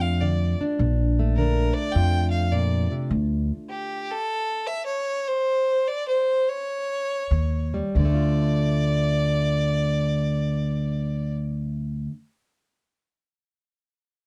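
Acoustic country blues with a brooding, mournful swing, cut from a longer piece and set in a dark, close booth. A clear, smooth fiddle with light vibrato carries the melody up front through a plate reverb, over a fingerpicked jumbo steel-string guitar whose old strings sound woody and full-bodied. A thumpy pizzicato upright bass on gut strings drops out at 3.5 seconds, just after the pace begins to slow, and returns at 7.3 seconds; the guitar is the last to ring out at 12.2 seconds.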